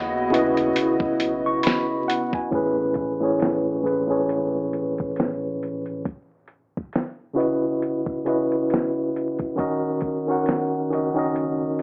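A swung lo-fi hip hop groove in 4/4 comes from a gritty, compressed sampler-style drum kit with a thumpy kick and fat snare, up front beside a worn, slightly out-of-tune tine electric piano that is lightly overdriven and colored by cassette tape. A warbling, detuned pad with chorus and a slow attack holds the opening C#m11 chord until 2.5 s, when a filter sweep begins. A round sine sub bass sits deep in the background at the start and returns at 9.6 s under a D#m7, while vinyl crackle, a low-pass filter and an AM radio tone give this hazy, nostalgic excerpt its character.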